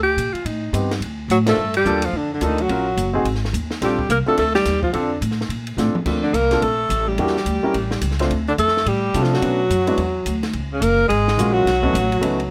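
A clear, close-miked alto saxophone with light vibrato carries the melody over a woody, pizzicato upright bass from the very start of this sophisticated small-group swing excerpt. A dry cocktail drum kit with dark cymbals, a high-tuned snare and a tight kick sits low in the mix, while an intimate upright piano with audible action noise provides the accompaniment. At 1.3 s a soft-attack tenor saxophone adds a second line with vibrato and scooped notes, just before a band accent at 1.4 s, and a drum fill at 5.8 s leads into the next section under light reverb.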